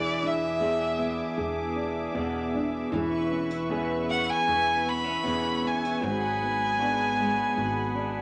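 A wet studio reverb gives this short, reflective excerpt from an acoustic folk-pop ballad a melancholic glow, with a rich, focused bowed violin up front carrying the melody in vibrato over a dark, thumb-plucked nylon-string guitar and a lo-fi, slightly broken-up electric guitar playing arpeggios through harmonic tremolo. A brassy, detuned sawtooth pad holds sustained chords with chorus and a soft attack, while a woody pizzicato upright bass sits low beneath the harmony as it moves from E7 to C#m7/E at 2.9 seconds and G#m7b5 at 6.0 seconds.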